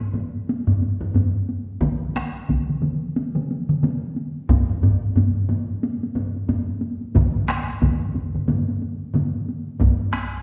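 Japanese traditional taiko drum ensemble music, powerful and driving, moves at 90 BPM in 4/4 with a swung sixteenth-note feel, in a short passage cut from a longer piece. A taiko ensemble struck with heavy sticks opens at 0.0 seconds, captured in a live room and set up front, joined almost at once by a solo taiko voice played with hard sticks, close and dry and also up front. At 1.8 seconds two further ensemble groups enter, one with heavy sticks and the other with hard sticks, both close and dry and sitting forward in the mix. The combined drums form a dense, thundering weight of acoustic percussion that carries through to the end. The performance sounds as if captured in a church or concert hall, with a reverberant recital-hall tail lingering around the strikes and some lossy compression artefacts audible in the sound.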